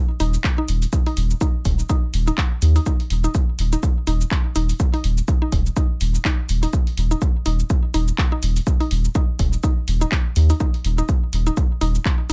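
A round, woody FM mallet pluck with chorus, delay and sidechain pumping opens this clinical, quirky minimal techno fragment alongside a thick, saturated sine sub bass that pumps up front and an analog drum machine of handclaps, hi-hat and shaker re-recorded in a small room, joined at 0.4 seconds by a punchy electronic kick, over a swung sixteenth-note groove in a dry mix.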